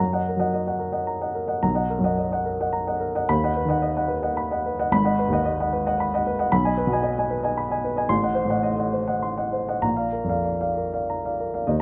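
Flowing in 3/4 with a free, rubato feel, the pulse drifts between 94 and 115 BPM in this short excerpt of a romantic character piece for solo piano. The mood is passionate and bittersweet, and the instrument is tuned slightly low, with A4 at 437 Hz. A baby grand piano plays alone throughout, ranging from a deep Ab1 up to C6, its tone warm, natural and up front. Close, detailed microphones capture the playing, set in a light reverb. The harmony moves from Ebm/Gb through Bmaj7 and Abm7, passes through a tense Adim7 at 8.1 seconds, and arrives on Bb at 9.8 seconds before the fragment ends at 11.8 seconds.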